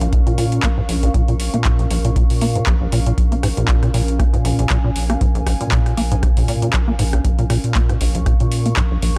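A rubbery, resonant acid bass riff leads this short cut from a longer acid house track, its square-wave tone plucking through a filter with a fast attack and dark decay, dressed in lush chorus, digital delay and sidechain pumping. Beneath it a thick, saturated triangle sub bass holds the low end with sustained notes, also pumping to the sidechain, while a deep analog kick drum, tape-warm and re-recorded in a small room, sits loudest in the mix from 0.1 s. An electro analog drum machine adds handclaps, rim clicks and metallic hi-hats with a 55% swing on the sixteenths at 118 BPM in 4/4. High above, a warbling, lo-fi pad of detuned sawtooth and triangle waves swells with a slow attack and long release, its chorus and built-in reverb giving a nostalgic, mellow haze. Resting on a single Bbm7 chord in Bb minor, the dark, dry production feels gritty and hypnotic across its 9.2 seconds.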